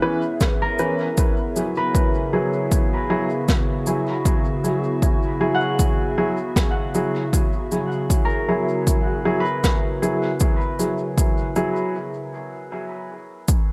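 Ambient dub at 78 BPM with a swung, spacious and hazy feel, this echo-heavy excerpt moves from C#m7 to Eadd9/C# as a warbling, detuned tape-like pad sustains chords under woody upright piano stabs and ringing thumb-plucked harp arpeggios, while a punchy overdriven electronic kick sits up front beside brushed snare and cabasa, and the piano drops out at 11.9 s for a brief break.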